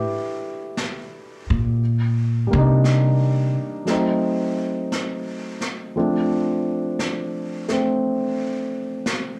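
An upright bass takes the spotlight in this intimate, romantic jazz ballad excerpt, its plucked, woody tone sitting up front as it opens with a solo that is heard until 3.5 seconds. Beside it, a warm grand piano supplies mid-register accompaniment throughout, also close in the mix and carrying a slapback echo. Brushed snare enters at 0.8 seconds, medium-tuned, placed distant and roomy as if in a small space, with its own slapback echo. The harmony drifts through Em11, Cm9 and F#dim7 before settling on a rootless Bbmaj9, all over a relaxed swung 4/4 feel. The sound is that of a live club gig heard through the house PA, with light reverb.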